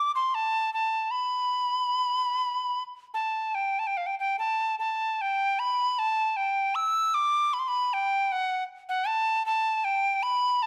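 Mournful and longing, this Celtic folk fragment in 3/4 moves with uneven, rubato beats as a solo metal whistle carries the melody alone from 0.0 to 10.7 seconds, ranging from F5 to E6. The whistle sits up front with an airy, bright tone, vibrato and a crisp, chiffy attack. A moderate recital-hall reverb surrounds it, and the phrase shifts into a new section at 3.5 seconds before the cut.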